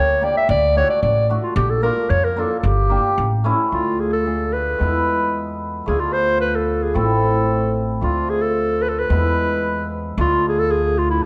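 A dark, warm production places this short klezmer excerpt in a recital hall of moderate reverb, with clarinet, cimbalom and bass all up front. A mellow, punchy clarinet sings the soulful, bittersweet melody in a smooth classical style, over ringing, shimmering hammered cimbalom and woody pizzicato upright bass in a straight 2/4. At 3.7 seconds the harmony moves from D, Bb, Gm and A7 into a second section that circles Dm, E and Am.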